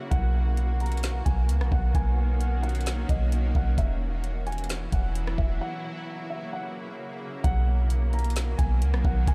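A shimmering, ethereal pad opens this dreamy cloud-rap excerpt at 0.0 seconds. Its detuned, granular chords carry chorus, built-in reverb and sidechain pumping. Almost at once a felt-muted upright piano adds an intimate, mellow melody high above, softened by a low-pass filter and trailed by delay. Beneath it, a deep, round 808-style bass sits up front, while a smooth R&B kit sets a half-time feel at 131 BPM in B major, with a knocking kick, woody snare, metallic hats and rim clicks. The blissful harmony moves from Bmaj7 through Esus2 to F#7, with a break arriving at 5.6 seconds before Bmaj7 returns at 7.4 seconds to open a new section. The recording overall is dry.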